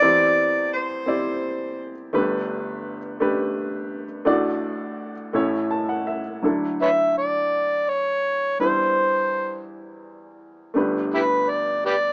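An overdriven harmonica carries the melody from 6.8 s, its gritty, amplified tone, tongue slaps and scooped notes giving a jazz-style solo voice up front in this tender, nostalgic acoustic folk-pop ballad. The piece moves slowly in 6/8 at 56 BPM with a straight feel in D major, and it is cut from a longer piece. A clear upright piano plays the accompaniment throughout, intimate and woody with audible action noise and short sustain. A bowed cello opens the recording as a second line, played sul tasto by one player with a soft attack and a pure, floating sound, before stopping at 1.7 s. Harmonies such as Cadd9/E, Gadd9 and Dadd9 give a gentle, open colour. The mix has the rough character of a home demo heard through a small speaker, set in a moderate small-room reverb.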